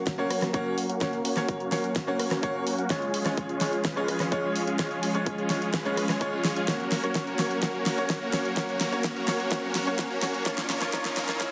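A thick, warbling unison pad and huge, detuned supersaw chords open this anthemic, uplifting stretch of festival progressive house in F# major, cut from a longer piece and moving at 127 BPM in a straight 4/4. The supersaw riff sits up front, pumping against the sidechain with a low-pass filter sweep and delay, while the vintage, slow-attack pad holds sustained chords in the background under chorus and its own filter sweep. From 0.1 s a punchy, tape-toned electronic kick and a layered pop kit with a fat snare, bright hats and rim clicks drive a drum fill through the whole build-up. A brilliant, worn grand piano adds intimate accompaniment with audible action noise, deep bass and short sustain, also pumping and trailed by delay. The harmony moves from F# to C#, back to F# and on to A#m, and a very quiet electronic riser creeps in at 9.2 s, all wrapped in a wet digital room reverb and a heavily compressed, radio-like finish.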